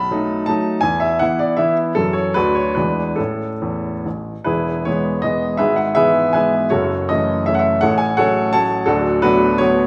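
Dotted rhythms in 3/4 lift this graceful, rustic romantic classical dance for solo baby grand piano, moving with rubato between 131 and 180 BPM from A major into E major at 4.5 s, the clear, intimate piano sitting up front with natural tone, long sustain and audible action noise inside a wet recital hall reverb, in a brief cut from a longer piece.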